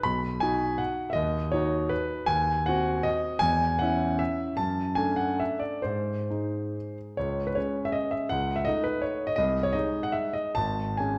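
A clear, intimate grand piano plays alone and up front, its natural tone carrying audible action noise as it works through a capricious, wistful romantic dance in 3/4 and C# minor. The dotted rhythms move with rubato between 128 and 181 BPM, ranging from G#1 to B5, and the harmony turns from B through G#7/D# and D/F# toward a new passage at 7.2 seconds that settles on C#5/G#. A wet recital-hall reverb with a dark production surrounds this brief excerpt cut from a longer piece.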